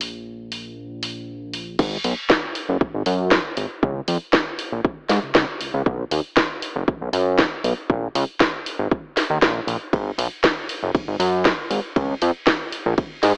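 Heard through an AM radio filter and set in a lush hall reverb, this sleek, cosmic nu-disco excerpt from a longer piece moves at 118 BPM in a straight 4/4, in G# dorian with tuning a touch below standard at A4 = 436 Hz. A fat analog bass holds the low end throughout, a thick, detuned blend of sawtooth and triangle tones with wave-folding, a fast attack, sustained notes and a filter sweep, sitting up front between F#1 and G#2. Alongside it from the start, an up-front house drum kit brings crash, hi-hat, ride and a cracking snare, its layered electronic sound re-recorded in a small room. At 1.8 seconds the drop arrives and a punchy electronic kick joins, carrying the same small-room character and staying prominent until just before the end. The result is a polished, forward groove colored by the broadcast tone and the hall's glow.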